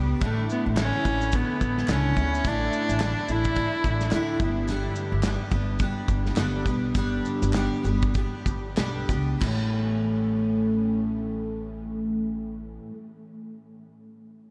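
A bright, full-bodied steel-string acoustic guitar and a woody pizzicato upright bass open this carefree, sunny acoustic pop fragment, cut from a longer piece, with the double-tracked jumbo guitar sitting up front, finger squeak included. Almost at once a bowed cello carries the melody with vibrato and a biting, even tone coloured by tape echo, while a dark, smooth studio drum kit with a medium-tuned snare, a tight kick, dark cymbals and a rolled-off top brings kick, snare, shaker and crash, and crisp, vintage group handclaps sit barely audible underneath. The cello phrase over Asus4 ends at 4.4 s as the harmony moves to G, and from 4.7 s the music gradually slows. The harmony arrives on A at 9.4 s, and once the drums drop out at 9.6 s and the handclaps fade just after, guitar and bass settle on that chord in a closing passage. A huge ambient reverb soaks the mix, giving the sunny, swung groove a dreamy haze.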